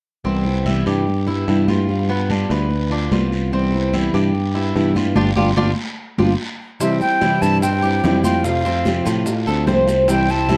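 A dark, lightly reverberant production carries this danceable Cuban son and guajira excerpt, built on a growly, up-front picked electric bass, a fingerpicked plugged-in steel-string acoustic guitar, the metallic double strings of a Cuban tres playing arpeggios, a raspy, distant guiro and ringing, high-tuned congas over chords alternating between Cmaj7 and G7. After a band accent from 5.2 seconds, a new section opens at 6.8 seconds as an expressive, breathy silver concert flute takes the melody up front. Round, low-tuned bongos and grainy maracas join it there while the harmony moves to C and F.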